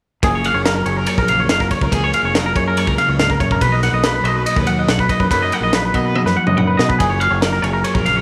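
Playful and intricate, this short math rock and midwest emo excerpt in F# major moves at 142 BPM in a straight 4/4, shifting from F#maj9 to Bmaj7 and back by 7.0 seconds. An up-front, twangy electric guitar plays fingered arpeggios high over a dark, clean electric guitar accompaniment and a growly fingered bass. A crisp fusion kit with a punchy kick, high-tuned snare, ride and toms sounds gritty and pumping in a small room, with a drum fill from 6.2 to 7.0 seconds, all set in a moderate echo-chamber reverb.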